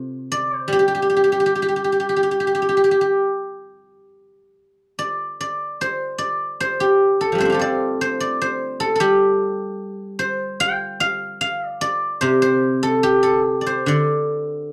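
A dark, softly reverberant studio sound frames this flowing, elegant fragment of traditional Chinese solo music, where a silvery, ringing guzheng played with fingerpicks sits up front and moves in free rubato within a range from C3 to G5, shifting into a new section at 4.2 seconds before the cut at 14.7 seconds.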